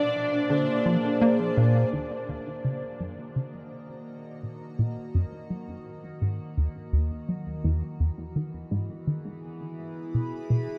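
A plucky analog bass sits up front through this short ambient cut, its punchy, funky riff built from sawtooth and square tones with a ring-modulated edge and a fast-attack, decaying filter pluck, thickened by ensemble chorus and analog delay. At 84 BPM in a straight 4/4 in Eb phrygian, the mood is hypnotic and cosmic, moving from A#7 to Ebm at 1.9 seconds and on to E at 7.6 seconds. An evolving wavetable pad holds sustained chords throughout, its unison layers morphing under chorus, phaser and built-in reverb, and it fades in over the second section while a filter sweep runs across the bass. In the opening moments, a very quiet, dark octave-layered synth lead touches a brief melody with a round, detuned tone and vibrato, and a bright, bubbling stepped-filter texture with resonant random steps flickers alongside it before both stop by 1.9 seconds. A huge, wet ambient reverb with a long tail surrounds the whole cut, which is taken from a longer piece.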